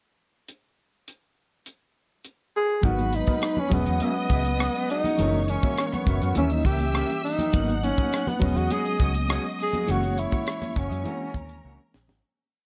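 Lush 1970s-style soul at 102 BPM in a straight 4/4, smooth and cinematic in mood, this short piece opens with a tight funk drum kit playing alone for most of a pickup bar, its high-tuned snare, tight kick, hi-hat and rim clicks dry and up front. At 2.8 seconds the verse arrives and the rest of the band joins: a dark, round, foam-muted fingered electric bass carries a melodic soul line, while a reedy, barky electric piano with light overdrive and fast tremolo halves the chord rhythm in rootless voicings dotted with grace notes. A breathy, whispered tenor saxophone, having entered just ahead of the verse at 2.6 seconds, takes the lead with tape echo, shaping intimate, jazz-style motifs with scooped notes, soft attacks and vibrato. Above it, a distant, bowed studio violin section sustains long, lush high lines, and in the background a twangy, slightly broken-up electric guitar picks a soft sixteenth-note rhythm part, joined by very quiet, ringing, high-tuned congas in a syncopated groove. 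The chords move through G#m9, E69, F#7 and D#7b9 in a small, lightly reverberant room, and from 9.9 seconds the music fades out as the drums close with a brief fill.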